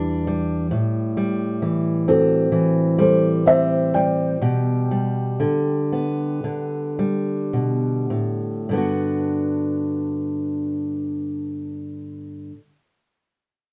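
An acoustic folk-pop ballad fragment, nostalgic and hopeful, in which a soft, felt-muted upright piano carries an intimate melody until 7.5 seconds over an up-front fingerpicked steel-string guitar with audible finger squeak that continues to 12.6 seconds, while a round fretless electric bass is barely audible in the opening 0.7 seconds and the band, playing live in one room with moderate reverb, slows down before arriving on a Gmaj7 chord.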